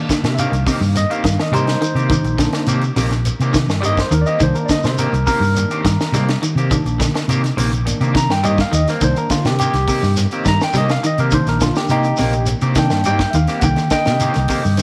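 A bright, barky tine electric piano solos up front through a phaser in this intense, defiant afrobeat excerpt, holding one static chord throughout. Beneath it, a clean, picked electric guitar plays arpeggios in the background through ensemble chorus, a slightly broken-up, twangy guitar with subtle chorus adds stabs, and a round, amped fingered bass anchors the low end. A tight funk drum kit with a high-tuned snare and tight kick drives the straight 4/4 groove alongside a grainy, vintage shekere, and the band sits in a moderate echo chamber reverb.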